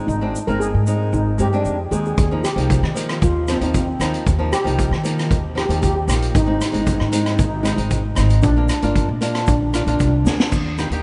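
Calypso with a festive, bouncy mood, heard in a brief cut from a longer piece, set in a vast, echoing space with a moderate cathedral reverb and a softened top end. A shimmering double-second steel pan carries the melody from the start until 10.1 seconds, its mellow tone shaped by soft rubber sticks. Underneath, a fingerpicked flamenco guitar with fresh strings gives acoustic accompaniment, while a woody, thumpy pizzicato upright bass on gut strings sits dark and up front. A grainy egg shaker ticks away in the background, and at 2.2 seconds a street-band drum kit joins with a boomy kick, high-tuned snare, rim click, hi-hat and crash, mid-forward and rolled-off at the top. The harmony moves from Abmaj7 through Ebsus2, Ab and Bb before landing on Eb, with a drum fill at 10.3 seconds leading into that arrival.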